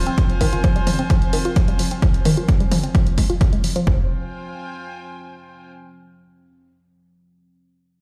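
An up-front, punchy electronic kick drives this hypnotic, industrial slice of peak-time techno in F minor at 130 BPM. Around it play an analog drum machine's hi-hats and toms, a woody, wave-folded pluck riff with chorus, tube saturation, delay and a filter sweep, and a tight sawtooth sequencer bass in the background. A deep, dark ambient pad drone carries chorus and built-in reverb, and a reedy chamber string section with gut-string tone fades over the first 3.9 seconds before lingering alone from 4.1 to 5.7 seconds. Sidechain pumping moves through every part but the kick, and the whole sits in a stone-room ambience heard through a big sound system.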